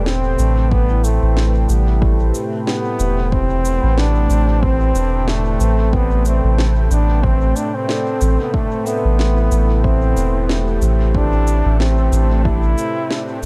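Dark, dry production frames this deep, spacious ambient dub excerpt at 92 BPM in A minor, resting on a single Am9 chord, where a round, up-front sub bass with tube saturation anchors an overdriven background kick entering at 0.7 seconds, a woody electronic snare with cabasa carrying dub echo, a smooth, detuned sawtooth pad with chorus, a mellow, ringing soft-mallet vibraphone playing arpeggios with slow motor vibrato and tape echo from 0.9 seconds, and a warm, classical-style solo trombone melody with vibrato and tape echo.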